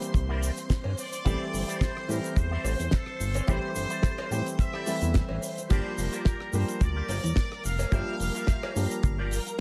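A lightly swung 108 BPM groove in 4/4 drives this sleek, groovy nu-disco passage in G dorian, cut from a longer piece: a tight, dry kick sits up front beside a damped 70s kit with a fat snare, hi-hat, rim click, shaker and crash, while a distant cowbell arrives at 0.8 seconds in the background. A dark, glossy chorused synth bass with a plucky pulse-and-sawtooth tone anchors the low end, a deep concert grand piano with short sustain comps underneath, and a lush, mellow string machine with ensemble chorus and sidechain pumping holds chords over C7, Am7 and Gm7. A bright, twangy envelope-filtered electric guitar riff with 12-bit grit joins early, and from 1.0 seconds a nasal, muted trumpet section carries the melody with light vibrato and dub echo, all in a small room with some lossy compression artefacts.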